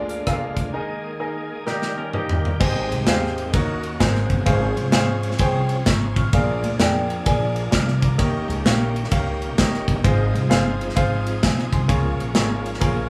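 Soulful and hopeful, this uptempo gospel cut in Ab major swings along at 129 BPM, carried by a clear, up-front concert grand piano, a growly pizzicato upright bass and a polished studio drum kit with bright cymbals and a tight kick. A full, shouting tonewheel organ holds sustained chords through a slow rotary speaker with light overdrive and key click, while a muted, nasal French horn section sits in the background only until 2.6 seconds. A twangy, clean electric guitar adds a brief second line from 1.7 seconds alongside a drum fill, before the band moves into the longer second section, all heard as a live room with moderate studio reverb.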